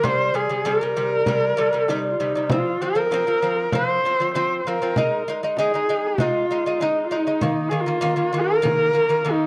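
From the first moment, a horsehead fiddle, lute and frame drum sound together in this solemn, vast passage of Mongolian traditional folk music, cut from a longer piece. It moves at a straight 98 BPM in 4/4, in F minor, tuned slightly high to A4 = 441 Hz, with the harmony moving through C5, F5, Ab5 and Eb5. Up front, a single player bows the horsehair strings of the fiddle, carrying the melody between Eb4 and C5 with vibrato and portamento. The fiddle's tone is rich, husky and focused with a smooth top, and it carries a cassette-tape colour. Beneath it, an acoustic lute, also up front, plays delicate fingerpicked arpeggios from C3 to Eb4 on bright gut double strings, some of them octave-doubled. A small, bright frame drum, played with soft hands, adds close, dry percussion until 9.4 seconds, and the whole home cassette recording sits in a small room ambience washed with wet spring reverb.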